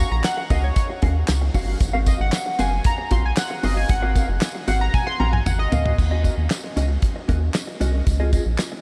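A rubbery, hollow square-wave bass sits up front in this funky, danceable early-eighties boogie funk excerpt, under a dry, damped seventies drum kit with a fat snare, tight kick and handclaps, and a jingly tambourine set back in the mix. A glossy, retro chorused polysynth takes a solo from the start until 6.0 seconds, while a mellow, clean electric guitar plays a fingered, compressed riff through analog chorus. A drum fill leads into a new section at 6.0 seconds, where the chords move from Ebm7 to Dbmaj9, all in a light small-room reverb.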